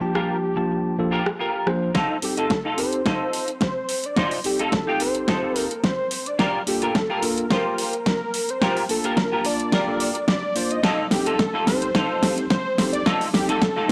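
Nu-disco with a groovy, sunny swing, this cut-off passage sets a thick, detuned sawtooth unison lead with vibrato and tape echo over a pumping, filtered tine electric piano played through its built-in speakers, while a dark, hollow-bodied semi-hollow guitar riff with ensemble chorus sits up front, a pop kit with fat snare and metallic hats starts at 0.2 seconds, and a punchy, overdriven electronic kick joins at 1.9 seconds as a build-up, drum fill and filter sweep on the piano run from 2.0 seconds to the end, all in a gritty cassette-tape sound with a moderate echo-chamber reverb.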